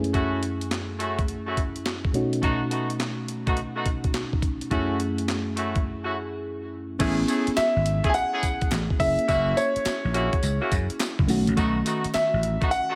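Swung sixteenths in 4/4 drive this punchy, confident new jack swing excerpt, with a gritty, compressed boom bap drum kit built on a thumpy kick and high-tuned snare alongside hi-hat, handclaps, tambourine and crash, under a soft, round FM electric piano colored by chorus and phaser and tight, vintage horn stabs trailing digital delay. After a short break, a growly, amped slap bass enters at 7.0 seconds, and from 7.6 seconds an up-front concert grand piano carries the high melody with its own delay while a crisp, very quiet group handclap adds human texture. A moderate echo-chamber reverb gives the whole a roomy sheen as the chords move from F#m7 and B7 toward Amaj7 and F#7.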